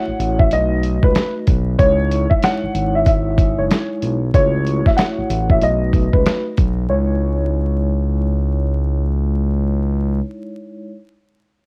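A home cassette recording with vinyl crackle and light reverb frames this moody, dark boom-bap hip-hop fragment, where a worn, slightly detuned upright piano carries the melody through plate reverb and analog delay until 8.8 seconds, a mellow vibraphone with soft mallets rings through the boxy small room, a smooth sawtooth synth bass glides with portamento, and a gritty, compressed sampler-style drum kit with a thumpy kick drives the swung groove until 6.8 seconds.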